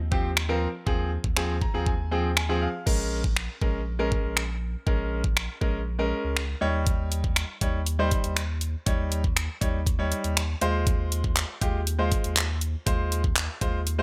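An electronic, layered pop drum kit sits up front in this driving, energetic dance-pop excerpt, its knocking kick, bright hi-hats, handclaps, finger snaps and crash cymbal treated with gated reverb and a tape-tinged finish. Beneath it, a deep, round sine sub bass with a fast attack holds sustained low notes, pumping against the beat through sidechain compression. A clear, polished concert grand piano plays accompaniment with short sustain and a present low end, pumping in the same way, and adds a fill from 1.4 to 2.9 seconds and another at the very end. The harmony moves from Ab6/Eb to Bbm7 at 2.9 seconds, then through Eb7 before returning to Ab6/Eb. The mix is dry and bright, with a 1980s-style digital sheen that keeps the groove crisp and forward.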